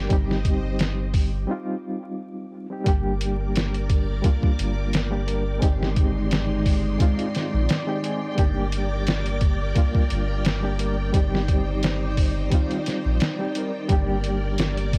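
A gritty, pitched-down sampler-style drum kit with a thumpy kick sits up front in this dark, hypnotic trip hop excerpt, over a round, deep dub sub bass, a reedy overdriven electric piano with fast tremolo and tape echo, mellow chorused cello string-machine chords, and an airy, breathy wind-like texture in the background, all steeped in cassette tape grit and vinyl crackle, with a break from 1.5 to 2.9 seconds.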